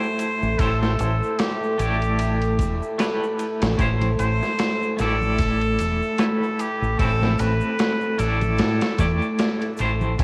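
A home cassette recording with vinyl crackle frames this dark, cinematic trip hop excerpt at 75 BPM in A minor, where a nasal straight-muted trumpet carries the melody over tape-echoed, tremolo-laden clean electric guitar, a detuned analog pad holding an Am7 chord, a round dub bass up front, gritty pitched-down boom bap drums with a thumpy kick and high-tuned snare, background egg shaker and congas, and a faint electronic swell arriving at 9.4 seconds.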